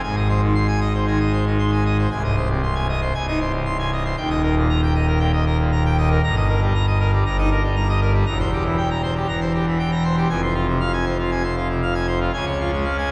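Stormy and dramatic, this classical organ toccata drives forward at 117 BPM in a straight 4/4, cut from a longer piece. A lone pipe organ on full organ carries the whole 13.1 seconds, spanning C1 to C6 with majestic, brilliant mixtures and a romantic voicing that sits up front. The harmony opens in Ab major, moving from Ab through Ab/C to Eb and Eb/G, then darkens into F minor at 8.3 s by way of C7/E before settling on Fm and reaching Db at 12.3 s. A wet church reverb with a 3.1-second decay surrounds the instrument, and the listener seems placed further back in the room, where the top end is rolled off above 10.7 kHz.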